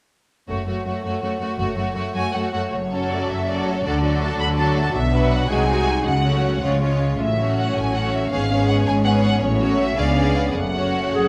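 Set in a moderate scoring-stage reverb, this urgent, restless excerpt from a dramatic romantic symphonic movement in 6/8 with rubato sets a warm, expressive, vibrato-laden violin melody over a clear, intense second violin line, rich violas and smooth, even cellos and double basses, while a mellow, distant French horn section enters with sustained background chords at 3.1 seconds and a soft-attacked solo clarinet sounds up front at 11.1 seconds.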